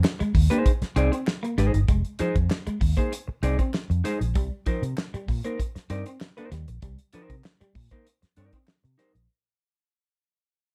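A damped 70s drum kit with a fat snare and tight kick opens this cool, hypnotic funk excerpt at 97 BPM together with a dark, hollow-body semi-hollow electric guitar comping and crisp group handclaps set in the background. From 0.2 seconds a round, punchy, foam-muted vintage bass sits up front beside the drums, while a clean, picked electric guitar plays a low riff with a warbly pitch drift over a rootless Fm7 that moves to Cm7 at 4.4 seconds. The production is dark with light reverb, and the whole passage fades out across its 9.3 seconds.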